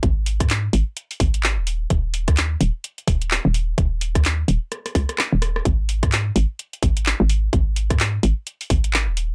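Bouncy and soulful, this short cut of two-step UK garage moves at 128 BPM in 4/4 with a 60% swing on the sixteenths. A hollow, knocking FM bass with a punchy, fast attack and a mellow, decaying tail sits up front through tube saturation, ranging from D#1 to G#2, beside a tight, layered electronic kick that stops at 8.8 seconds. A garage kit of handclaps, rim clicks and warm hats rounds out the groove, a drum fill arrives from 4.7 to 5.7 seconds, and the whole mix feels close and dry.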